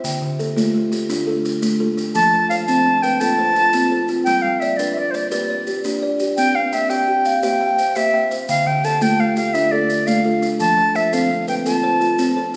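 Southern African traditional music built on an mbira-style interlocking cycle, this short cut from a longer piece has a warm, rippling mood and a straight 12/8 lilt. A buzzing kalimba sits up front, its thumbnail plucks ringing out in woody, hollow-box arpeggios, while a second, softer kalimba weaves its own thumb-plucked arpeggios through the same register. Grainy maracas sound mellow and distant beneath them, as if heard from across a large room. At 2.1 seconds a bright wooden flute steps forward with an airy, straight-toned melody, its crisp attacks giving the line an expressive edge. The chords cycle through Dm, F, G and C and back again, all bathed in the lingering reverb of a recital hall that softens the top of the sound.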